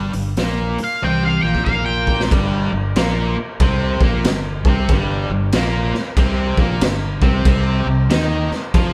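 A gritty, smoky blues rock and southern rock fragment, cut from a longer piece, sounds like a power trio playing live together in one room, with light reverb around it. At 93 BPM in 4/4 with a swung eighth-note feel in G minor, a cranked stack guitar drives the riff from the start, its bright, overdriven, double-tracked tone sitting up front with overdrive and spring reverb. A fingered electric bass gives a growly, punchy low end, while a raw garage drum kit of crash, hi-hat, kick, snare and toms sounds saturated and boomy, with a pumping small-room character, a rolled-off top and a fill from 1.0 to 2.3 seconds. Briefly, between 0.8 and 2.2 seconds, an octave-fuzz lead guitar cuts in up front with a dark, distorted tone colored by wah and slapback echo. The harmony rests on G minor before shifting to C minor add 11 at 7.5 seconds.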